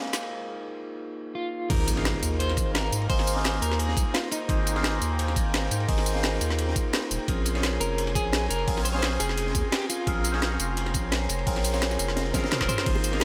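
Uplifting and lush, this liquid drum and bass excerpt runs at 172 BPM in Ab major, opening with a barky, lightly overdriven tine electric piano through phaser and dub echo over a detuned sawtooth unison pad with chorus, while a filter sweep and a short break build toward the drop at 1.7 seconds. A slightly broken-up, fingered electric guitar melody with tremolo and delay enters just before, at 1.4 seconds. At the drop a deep, saturated sine sub bass and a knocking, overdriven electronic kick arrive with a background impact. They join a layered kit with a woody snare and bright hats up front and a dark, gritty breakbeat kit with a high-tuned snare tucked behind. Harmony moves from Ab69 to Bbm9, a drum fill arrives near 12.3 seconds, and close, dry bongos enter just before the cut.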